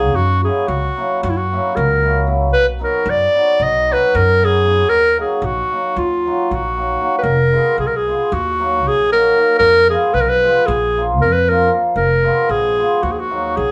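A moderate studio ambience surrounds this short excerpt of a Balkan wedding band playing live in one room, with a classical-style clarinet up front carrying the solo melody. The fiery, bittersweet tune in Eb minor drives along at 229 BPM in eighths in a straight 9/8, while a mellow, shimmering cimbalom rings out a hammered accompaniment and a woody, growly pizzicato upright bass anchors the low end. Around 7.2 s the music moves into a new section where the harmony returns repeatedly to F diminished, moving between it and Eb minor and Bb.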